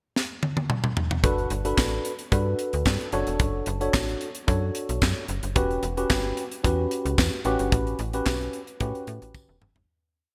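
Late-night and slick, this short early-eighties boogie funk piece at 111 BPM opens with a tight drum fill at 0.2 seconds before a dry, high-tuned kit settles into a four-on-the-floor boogie beat with snare layered with handclaps, joined at 1.2 seconds by a snappy, metallic slap-like FM bass playing a fat syncopated line and a worn, slightly out-of-tune tine electric piano pushing rootless chords through lush chorus over Gmaj9, Bm9, Em69 and A13, while from 1.8 seconds a very quiet, jingly tambourine marks the backbeat, all set in a bright digital production with a lush hall reverb before the fade-out from 7.7 seconds.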